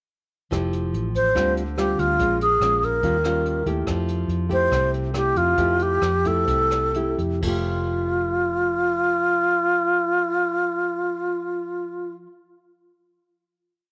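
A bright, wooden-headed alto flute carries the melody from 1.2 seconds, airy and up front with a crisp attack and vibrato, singing motif-based song phrases between F4 and C5 in this breezy, sophisticated bossa nova piece in F major. Beneath it, a thumb-plucked nylon-string guitar plays bossa nova accompaniment, thumb bass under syncopated plucked chords, its classical tone carrying an audible finger squeak as the harmony moves from Fmaj9 through Dm7, Bbm7 and Eb9. A vintage, foam-muted fingered electric bass adds a dark, round, amped line of dotted roots and fifths. A distant jazz brush drum kit sets a soft bossa groove with a boomy kick, rim clicks, hi-hat and dark cymbals under a rolled-off top, then drops away at 7.5 seconds. The tempo sits between 122 and 143 BPM in a straight 4/4 and slows from 3.9 seconds until the piece comes to rest on a sustained Fadd9 chord at 7.4 seconds, with light reverb and a small room ambience around the ensemble.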